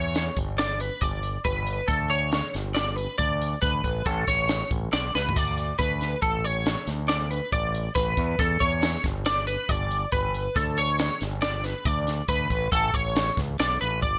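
A dry, close mix opens this wistful, intricate math rock and midwest emo excerpt in 5/4, with a bright, twangy twelve-string electric guitar playing clean arpeggios through an ensemble chorus over a cycle of A9sus4, G and D5. Beneath it, a growling fingered electric bass with overdrive holds the low end. A crisp fusion drum kit with a punchy kick, high-tuned snare and dark cymbals moves across hi-hat, splash and toms, adding a fill at 5.1 seconds.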